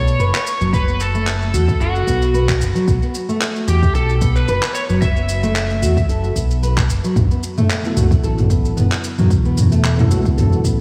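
Organic downtempo at 112 BPM with a light 16th-note swing and a mystical, dreamy mood: a bright, overdriven slide guitar carries the melody until 6.1 seconds over dark, fingerpicked nylon-string arpeggios dulled by a low-pass filter, both trailing diffuse ambient delay. Underneath, a smooth, mellow synth bass with tube saturation and vibrato pumps against the overdriven deep kick that arrives at 0.7 seconds, while an up-front deep house kit adds handclaps, shaker and toms. A clean, bell-like tine electric piano enters quietly in the background at 7.8 seconds with ensemble chorus, and the whole mix is soaked in lush hall reverb as the harmony moves from B5 to A.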